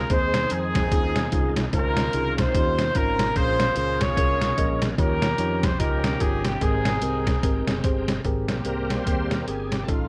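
A swung, gritty, pitched-down sampler-style drum kit, compressed and up front with a thumpy kick, medium-tuned snare and hi-hat, drives this hopeful, reverent uptempo gospel excerpt alongside a fingered, amped electric bass, a mellow, clean tine electric piano, and a very quiet, bright, lightly overdriven tonewheel organ holding sustained chords through a fast rotary speaker. An up-front, loose pop-style horn section carries the melody with light vibrato and slapback echo until 7.8 seconds. From 8.2 seconds the organ takes a solo while a soft-attack, sul tasto string section floats in the background, all in light reverb.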